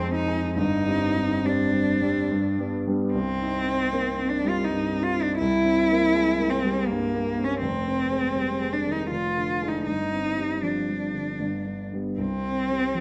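A bowed solo cello sings a rich, yearning melody with vibrato, soft attacks and expressive portamento, accompanied by a dark, mellow baby grand piano with long sustain and a vintage smoothness, both up front in this elegiac romantic classical passage in C minor, cut from a longer piece, which moves in a rubato 3/4 at roughly 69-82 BPM, shifts into a new section at 3.1 s, and sits in a moderate recital-hall reverb captured by close, detailed microphones.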